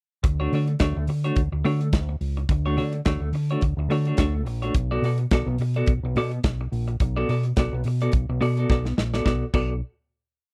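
A four-on-the-floor disco beat drives this short, complete piece at 106 BPM in 4/4, with a light 16th-note swing and open hi-hats on the off-beats setting a sultry, glamorous mood. The acoustic drum kit sits up front in a small room, its tight kick and medium-tuned snare joined by hi-hat and crash, and a drum fill at 8.7 seconds leads into the closing chord at 9.3 seconds. Underneath, a fingered electric bass plays a dark, round, punchy octave disco line, amped and close, with slides and chromatic approach notes. A clean, compressed semi-hollow electric guitar adds choppy sixteenth-note disco chords with a picked attack and a tremolo effect, moving from Dmaj7 to Bm7 at 4.7 seconds. The sound is dry and close in a 1970s studio style, with all three parts entering together at 0.2 seconds.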